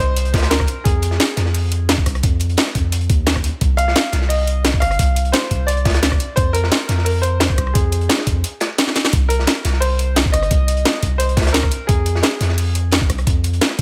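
A clear, intimate grand piano opens this soulful, dreamy slice of liquid drum and bass, its melody carrying audible action noise and trailing a tape echo, while a deep, mellow 808-style bass with a fast attack sustains and decays up front beneath it. Within the first second the drums arrive in layers: an up-front electronic kit with a cracking, overdriven snare, bright hats and rim clicks, plus a compressed, thumpy sampler-style kick with a tape-warm character. Tucked in the background, a crunchy acoustic breakbeat kit adds a dark, saturated, rolled-off texture, its hats and snare filtered to sit beneath the main groove, all in small room ambience. The harmony drifts between suspended and minor-seventh colours, moving from C7sus2 through Fm7 and Csus2 to a Cm9, and a drum fill marks the 8.9-second point. The piano falls away at 12.9 seconds, leaving bass and drums to carry this echo-heavy, lightly reverberant excerpt of a longer piece.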